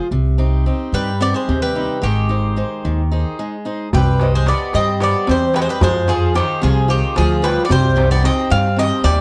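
Heard through close, detailed microphones with very little reverb, this short section cut from a longer Greek bouzouki-band folk piece feels bittersweet and moody, moving in a straight 7/8 at 222 BPM counted in eighths over a C minor, A-flat, F minor chord cycle. A boxy, picked swing-style acoustic guitar opens the accompaniment, joined almost at once by a woody, warm pizzicato upright bass with steel strings that sits up front. At 0.9 seconds two acoustic bouzoukis arrive: the lead carries the melody with a bright, metallic ring from its double and partly octave-doubled strings, placed forward and given a slapback echo, while a second, quieter bouzouki plays a lower supporting line. A brief break at 3.4 seconds leads into a new section at 3.9 seconds, where a metal-shelled darbuka enters with a crisp, deep tone, set back in the distance as if in a large room.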